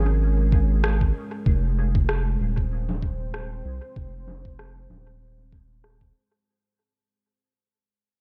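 Hazy and meditative, this short ambient dub excerpt, cut from a longer piece, moves at 96 BPM in 4/4 with a light swing on the sixteenths. A deep, moody pad of detuned, wave-folded sawtooth layers with ring modulation and a sub octave holds sustained chords from the start, its slow attack and long release softened by chorus and built-in reverb as the harmony shifts from Bbm7 to Fm at 1.5 seconds. Up front sits a round analog bass, sine-like and dark with a fast attack, while a muffled, pitched-down kick with a compressed, thumpy body arrives at 0.5 seconds, re-recorded in a large room. An overdriven rim click and congas join at 0.8 seconds, low-pass filtered and thrown into dub echo. Filter sweeps run across the drums and the synth bass throughout, the whole passage fades out over its length, and a digital ambience surrounds the parts.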